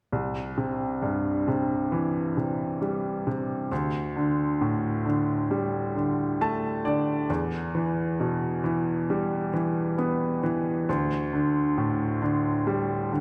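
A straight 4/4 pulse at 67 BPM carries this longing, melancholic pop fragment, cut from a longer piece, in which a lone baby grand piano plays brilliant, intimate accompaniment up front through C, Dsus4, Em and Dsus4, adding a fill from 6.0 to 7.3 seconds, its long sustain and audible action noise wrapped in the wet reverb of a recital hall.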